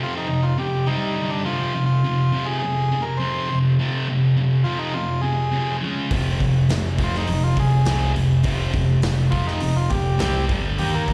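A thick, double-tracked fuzz guitar riff sits up front beside a buzzy vintage combo organ melody with digital delay, setting a swaggering, menacing garage rock mood in straight 4/4. At 6.1 seconds a growling, overdriven picked bass and a gritty garage drum kit, with punchy kick and rolled-off top, join the groove. The whole cut, taken from a longer piece, sounds like a live gig heard through the venue's PA, wrapped in room and hall reverb.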